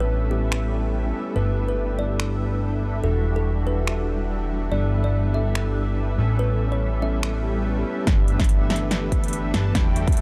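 A fat, sawtooth analog bass pumps up front beneath a bold, detuned polysynth riff with lush chorus, a woody kalimba melody with digital delay, a mellow tine electric piano and a faint shimmering pad in this euphoric, playful half-time future bass excerpt, where finger snaps, metallic hi-hats and a punchy snare arrive at 0.5 seconds, a quiet swell and riser rise in at 7.4 seconds, and at 8.1 seconds a ringing concert harp plays low-pass-filtered arpeggios and a layered electronic kick joins the build-up and drum fill as the polysynth's filter sweeps, all within a dark, warm production with little reverb.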